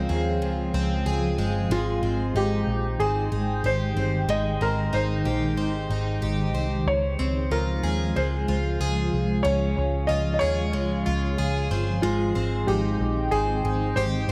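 Awash in plate reverb and heavy echo, this ethereal, dreamy dream pop fragment, cut from a longer piece, moves at 93 BPM in Db lydian between Dbmaj7 and Abmaj7 across 14.3 seconds, as a soft, mellow felt-muted upright piano carries the melody through dub echo, a shimmering, evolving granular pad holds sustained chords colored by chorus and phaser, a picked plugged-in twelve-string acoustic guitar plays octave-doubled arpeggios up front with subtle chorus and dub echo, and a dark, round, foam-muted electric bass sits punchy beneath.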